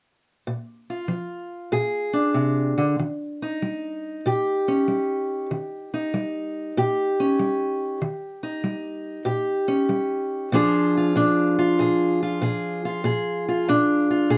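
A fingerpicked steel-string parlour guitar carries this short blues fragment on its own, its dark, boxy tone sitting up front in the recording. The mood is soulful and gritty, with a swung, unhurried feel in four that leans into the groove. The guitar ranges from low Bb2 up to Ab4, moving from a Bb7 chord to Eb7 at 3.0 seconds before returning to Bb7 at 10.5 seconds as a new passage begins. Close, detailed miking captures the character of the strings, while a light reverb adds a touch of space around the instrument. Cut from a longer performance, the piece runs from 0.5 to 14.4 seconds.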